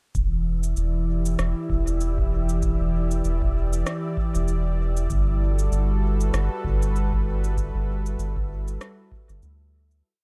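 A soft, slow electronic kick sits in the background at 97 BPM in 4/4 with a swung sixteenth feel, while a sparse, overdriven shaker and rim click carry a dub echo and a small-room character. This short, complete ambient dub piece in E minor feels deep and hazy, built on a single groove that moves from Em7 to Gmaj9 at 5.1 seconds. Up front, a round, nasal analog bass with tube saturation and a fast attack plays a sustained dub-style line. A detuned sawtooth pad with chorus holds slowly shifting chords, and farther back a breathy, wind-like noise layer with its own reverb sustains a high note. The production is dark and dry, and the piece fades out from 6.7 seconds to its close at 10.0 seconds.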